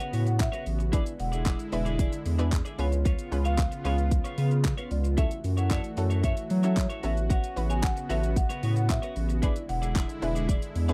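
Euphoric and upbeat, this dance-pop excerpt at 113 BPM in A major sets a woody marimba melody with slapback echo over a bright, detuned analog pluck and a smooth analog pad, both pumping with sidechain and chorus, while a twangy twelve-string electric guitar riff, a punchy electronic pop drum kit with handclaps, hi-hat and shaker, and a deep, saturated sub bass entering at 0.1 s fill out a dry, close 1970s-style studio sound.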